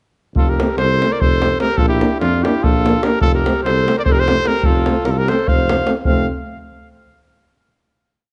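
Balkan folk for brass band in a brisk 7/8 at 295 BPM in F major, festive and virtuosic, where a bright trumpet with light vibrato and tape echo leads up front with hook-driven motifs over a smooth alto saxophone harmonizing mostly in thirds, a clear French horn and mellow euphonium punching offbeat chords in the background, a soft-attacked tuba marking root and fifth on the main beats, and a tight, saturated davul driving a two-stick pattern, all moving from F to Bb and back before a final chord at 6.1 seconds rings in a moderate recital hall within a dark production.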